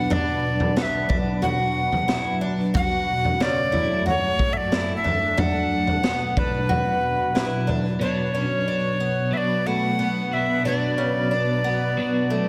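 Haunting and melancholic, this dream pop excerpt sets an airy, chiffy alto recorder melody with delay up front over a dark, blurred granular cloud pad and shimmering, octave-doubled arpeggios from a boxy picked twelve-string acoustic guitar with subtle chorus and delay. A gritty, saturated garage drum kit with a punchy kick and high-tuned snare pumps in a small room until 7.8 seconds, while a very quiet, ringing vibraphone adds a faint metallic texture at the start and again later. At 8.0 seconds a clean, compressed twelve-string electric guitar with tremolo joins the accompaniment, all inside a lush hall reverb.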